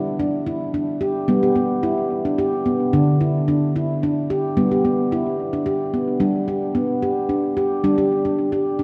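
A gentle, straight three-beat sway carries this calm, dreamy piece of meditative world music, cut from a longer work. A solo handpan of stainless steel, struck with the fingertips and placed up front, rings out through tape echo and a drenched church reverb, moving from G to Dsus24 and back before settling on an open G5 as a second section begins at 6.2 seconds. The dark production wraps the instrument's ringing tone in a warm, spacious glow.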